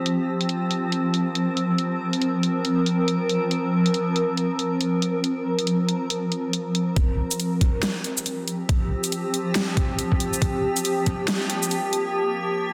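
A dense, heavily limited mix sits in a lush hall reverb, opening this brooding, dark deep dubstep excerpt at 139 BPM with a half-time, swung feel. A cloudy, evolving granular pad holds blurred chords with its own reverb, while an up-front electronic kit of bright low-passed hats, shaker and a huge, tape-toned snare keeps time. At 7.0 s a gritty, pitched-down, thumpy kick enters as the track moves into a build-up that runs until the cut at 12.7 s.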